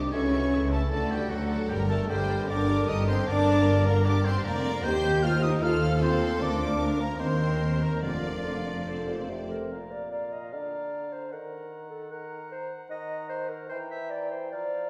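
Bright, bowed violins carry the melody of this stormy, urgent romantic orchestral fragment from the first moment, with rich second violins and very quiet violas beneath, clear French horns holding sustained chords over focused double basses and expressive background cellos, while a hollow flute, mellow clarinet, distant oboe and vintage-toned bassoon weave their own lines and accompaniment, the strings and horns falling away by 9.5 s so the woodwinds play alone until 14.9 s in a reverberant recital hall heard from further back.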